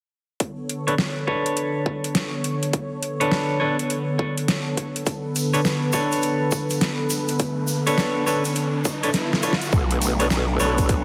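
A swung 16th-note groove at 103 BPM in 4/4 drives this gritty, funky glitch hop piece in B minor, cut from a longer track. The punchy, overdriven electronic kick sits up front beside a dubstep kit with a deep snare and metallic hi-hats, all re-recorded in a small room. A warm analog pad holds smooth, detuned sawtooth chords on Bm9, its chorus and sidechain pumping giving it a breathing motion, while a bright, clean semi-hollow electric guitar plays picked stabs through a low-pass filter and digital delay. A grainy, distant egg shaker joins at 5.1 seconds, and a background riser builds from 6.8 seconds toward a short drum fill. At 9.7 seconds a growling, wobbling bass arrives on a low B, saturated and aggressive, as a filter sweep moves across the guitar. The whole mix carries a heavily compressed, radio-like sound set in a lush hall reverb.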